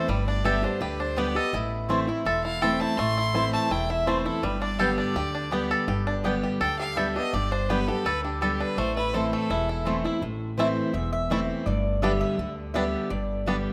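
This lonesome, rustic bluegrass excerpt has the rough, homemade sound of a demo, with light reverb and small-room ambience. A clear, boxy fiddle carries the bowed melody with light vibrato until 9.8 seconds. Beneath it, an up-front picked dreadnought guitar and a twangy banjo played with fingerpicks keep the drive going, along with the dark, woody pizzicato of an upright bass. A mellow mandolin adds double-string stabs throughout, then takes a solo from 10.2 seconds.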